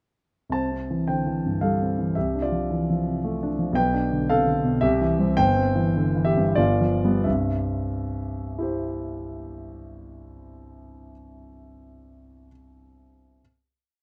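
This is a romantic classical character piece for solo piano, passionate and lyrical, complete in a few brief seconds. It moves in 3/4 at roughly 86-114 BPM with a free, rubato feel, set in C major and tuned a touch high at A4 = 441 Hz. A warm concert grand sits up front, spanning G1 to A5, its deep bass and short sustain supporting a tune in sixths over rocking broken chords. The harmony runs from C through G/B, C, C/G and G7 before resolving home to C, with the pace slowing from 3.0 seconds until the final chord arrives at 7.3 seconds and rings to 11.2 seconds. Light reverb and a dark production give the instrument an intimate, rounded presence.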